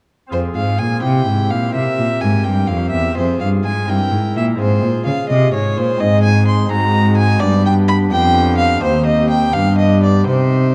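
A dark, warm recording set in a reverberant recital hall carries this grave, introspective excerpt of a baroque-style sonata movement in F minor, moving at 84 BPM in a straight 6/8, where a close, reedy gut-string violin sings the melody up front over a bowed, full-bodied period-style cello bass and a nasal pipe-organ cornet solo stop with audible chiff supplying the continuo accompaniment, all three playing together from 0.3 to 10.7 seconds as the harmony drifts from F minor toward a closing G.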